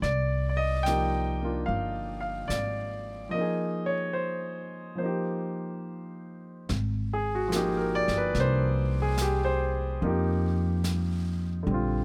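Swung eighth notes in 4/4 give this smoky, intimate jazz ballad its unhurried lilt, with a brush drum kit of brushed snare, snare drum and hi-hat sitting softly behind the other players. A baby grand piano carries the accompaniment with a natural, up-front tone, voicing rich chords such as Cm9 and Abmaj9 in the middle of the keyboard. Beneath it, a pizzicato upright bass with steel strings sounds woody, growly and thumpy, placed close to the listener in the low register. A break arrives at 3.3 seconds, and at 6.7 seconds the piece moves into a new section that settles on Abmaj9 before turning to Fsus2. The sound is dry and close, with a medium-tuned snare and little reverb, and the passage is cut from a longer performance.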